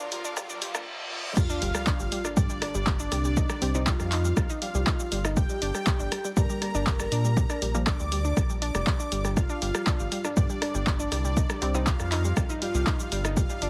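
A straight pulse from a punchy, tape-warm electronic kick and an analog drum machine with crash, handclaps, hi-hat, rim click and shaker drives this dramatic, melancholic melodic techno. After a brief build-up of riser, reverse cymbal and sub drop, where a lush unison pad and a very quiet, clear string section sound only until 0.9 s, the drop lands at 1.4 s. A fat, nasal polysynth second line joins there, with a round, deep analog bass following at 1.6 s, beneath a nasal, wave-folded pluck arpeggio, a thick, mellow unison lead melody in the background, and muted, echoing dub chord stabs, all pumping against the kick. A resonant drone with moving overtones creeps in at 10.2 s, and the whole mix has a dry, heavily compressed, radio-like sound.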